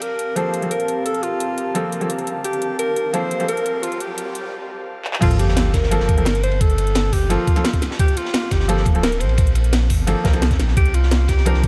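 A breathy alto saxophone sings a soulful, vibrato-laced jazz melody over an airy pad with chorus and pumping sidechain, a clear baby grand piano softened by a low-pass filter and analog delay, a cracking electronic drum kit with metallic hats and handclaps, and a riser building in the background of this liquid drum and bass excerpt at 173 BPM in G minor. At 5.2 seconds the pad gives way as the drop lands with a sub drop impact, a deep, round sine sub bass up front, a thumpy, gritty electronic kick, and a dark, saturated breakbeat kit with a high-tuned snare and ride cymbal. The rolling groove moves from Gm11 to C9sus4 near its end, all of it bathed in a dreamy cathedral reverb.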